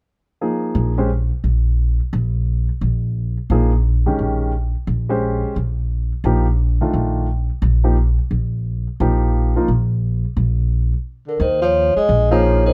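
Jazz at a brisk 174 BPM with a swung feel, this open, hypnotic passage from a longer piece rests on suspended Eb and F chords in a dry room. A woody pizzicato upright bass sits up front from 0.7 seconds, while a natural-sounding baby grand piano accompanies in short passages. After a brief stop at 10.7 seconds, a mellow, ringing vibraphone played with soft mallets takes the melody from 11.3 seconds over a distant, roomy tenor saxophone with vibrato and subtone.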